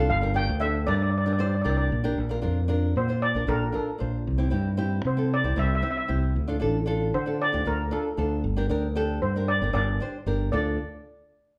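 A moderate reverb from a large studio surrounds this short cut from a longer calypso piece, with the trio heard playing live together in one room. Set in D minor at 115 BPM in a straight 4/4, the mood is moody and brooding rather than sunny. An up-front steel pan carries the melody between A4 and G5, struck with hard rubber sticks for a metallic, shimmering lead tone that sounds vintage and band-limited. Beneath it, a small, fingerpicked nylon-string guitar gives warm accompaniment in the range from C4 to C5, also placed close to the listener. A fingered electric bass, direct and amped, adds a bright, growly low end from G1 to D3 and sits slightly louder than the other two parts. The harmony moves from Gm through Bb, C and Dm, returns to Gm, and settles on Dm at 10.5 seconds as all three instruments play on until 10.8 seconds.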